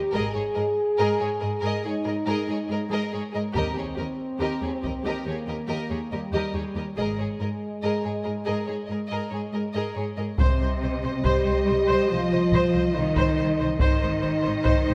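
Majestic and triumphant, this slow cinematic orchestral passage, cut from a longer piece, rests on dark, distant French horns holding sustained chords while a bowed string body unfolds: dark violins carry the expressive melody over a lush second violin line, rich viola accompaniment, up-front cellos and woody double basses anchoring the bass. A heavy, saturated taiko ensemble strikes briefly from 3.6 to 5.2 seconds, then returns at 10.4 seconds as the music turns toward C minor and carries through to the close. A moderate scoring-stage reverb gives the whole a roomy, epic breadth.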